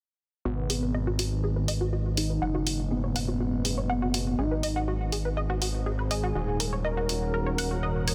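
A steady, straight 4/4 pulse at 122 BPM drives this melancholic, cinematic melodic techno passage in G# minor, cut from a longer piece and moving through G#m7, F#sus2 and back to G#m7 before settling on D#m7. From 0.5 seconds a gritty, saturated sawtooth bass sits up front with an aggressive, evolving edge, joined by a tight, detuned sequenced synth spinning arpeggios through chorus, phaser and tape echo, while a thick unison lead carries the melody with vibrato and delay. Filter sweeps run across the arpeggios, the lead and the pad for the whole stretch, giving the texture a sense of constant motion. A dry electronic hi-hat arrives at 0.7 seconds, the deep, moody pad fades in behind at 1.3 seconds with a slow attack, and by 2.0 seconds a very quiet, resonant drone on G#2 adds shifting overtones to the texture. The mix is dense and heavily limited, with only light reverb.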